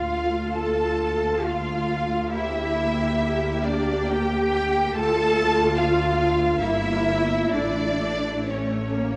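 Elegiac and melancholic, this brief fragment of a slow romantic movement for string orchestra drifts in 3/4 at roughly 62-74 BPM in D minor, its rubato pulse pulling the phrases gently out of strict time. Two violin sections sit in the background, one carrying the melody and the other a second line, their bowed tone lush and full of vibrato, the first more distant and the second more focused. Beneath them the violas supply a smooth, even accompaniment, while the cellos stand up front on the bass part, joined by the double basses' deep, distant foundation. The harmony moves from Dm through Gm/D and back to Dm before an Edim/G leads to an A chord near 7.5 s, leaving the phrase suspended when the 9.2-second passage breaks off. A scoring-stage reverb gives the ensemble a sense of space, and the sound carries the worn, warbling character of old cassette tape, its pitch drift lending the strings a faded, nostalgic quality.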